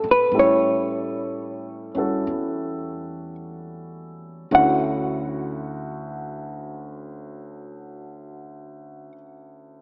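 Tender and late-night in mood, this short cut from a longer jazz ballad moves at a slow swing that gradually slows down over its first 4.5 seconds. A dark, clean hollow-body electric guitar carries the melody up front, its fingered tone compressed and sitting in a narrow upper register. A warm grand piano, natural and also up front, supplies the accompaniment across a broad span and rings on alone after the guitar and bass stop at 9.1 seconds, finishing at 9.8 seconds. Beneath them, a woody pizzicato upright bass with steel strings stays low and sits far back in the balance. The harmony moves from an A7 to a Dmaj9 at 4.5 seconds, where the second section begins. A lush hall reverb surrounds the trio, yet the rough home-demo mix and AM-radio coloring give the recording a lo-fi character.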